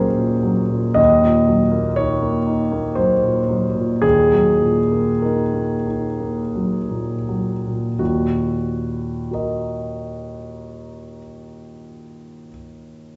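Heard from further back in a wet recital hall with the top end rolled off, this hazy, nocturnal excerpt of impressionist solo classical piano in Eb dorian drifts in a rubato 3/4 at 38-62 BPM, the clear concert grand sounding intimate and natural with deep bass and audible action noise across Eb2 to Eb5, slowing through its opening 8.0 seconds on an Ebm7 before settling onto Ebm for a brief second passage that closes at 11.9 seconds.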